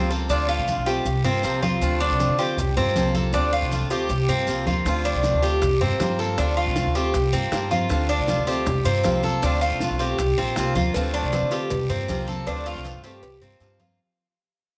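Bright, metallic Cuban tres arpeggios on double strings lead this nostalgic, sultry son and guajira excerpt, with a woody, thumpy pizzicato upright bass up front, a boxy, picked swing-style acoustic guitar comping over a Dm7 to C7sus4 vamp, thick-skinned congas and a raspy, distant guiro in the background, very quiet grainy maracas, and round, low-tuned bongos and cowbell joining at 4.9 s, all in an echo-chamber reverb before the fade-out from 10.9 s.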